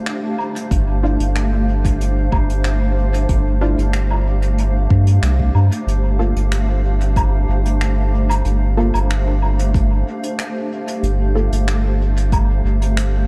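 A softly reverberant mix frames this meditative ambient dub excerpt, set in a straight 4/4 at 93 BPM with a deep, unhurried feel. A cloudy granular pad opens the piece with slow-attack sustained chords that blur and evolve inside their own built-in reverb, shifting from Dm/G to G7(no3) at 5.9 seconds. From 0.7 seconds a round, dark analog bass sits up front with a fast-attack, sine-like tone, arriving together with a layered electronic kick that carries a tape-softened weight. A distant, roomy brush kit of finger snaps, hi-hat and woodblock stays in the background, its rolled-off top trailing dub echo. Very quiet, muted sawtooth chord stabs with a filter pluck and chorus decay quickly beneath the pad, adding a mellow edge.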